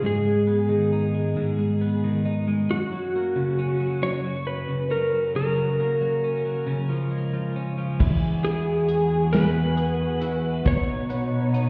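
A tender, romantic six-eight pop ballad in F# major at 45 BPM, where a clean, compressed twelve-string electric guitar with spring reverb picks the accompaniment while a dark, slightly broken-up electric slide guitar carries the melody through tape echo. At 8.0 seconds a lush, woody string section with vibrato enters on sustained chords alongside a modern studio drum kit with a punchy kick and bright cymbals, as the harmony moves to Eadd9 and then B. The whole short cut sounds muffled, as if heard through a wall in a stone room.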